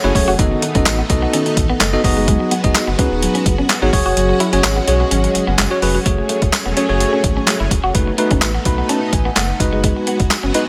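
A straight 4/4 pulse at 127 BPM drives this confident dance-pop excerpt in F# dorian, carried by a gritty, overdriven boom bap sampler-style kit with a thumpy kick, medium-tuned snare, handclaps and hi-hat sitting up front, joined from 0.9 seconds by a jingly, band-limited tambourine in the background. A deep sine-and-triangle sub bass with octave anchors the low end, while a bell-like tine electric piano plays bright, direct accompaniment, and a lush vintage string machine holds sustained chords with ensemble chorus. Sidechain pumping breathes through the electric piano, strings, bass and a soft, round pluck whose dark, chorused arpeggios with digital delay sit behind the mix until 6.0 seconds. A clean, picked electric guitar riff with subtle chorus sits in the background throughout. The kick drops out from 4.2 to 6.1 seconds before the second section opens on F#madd9 and cycles back through B7/F# and G#m7/F#, with an electric piano fill at 8.4 seconds, all set in light reverb.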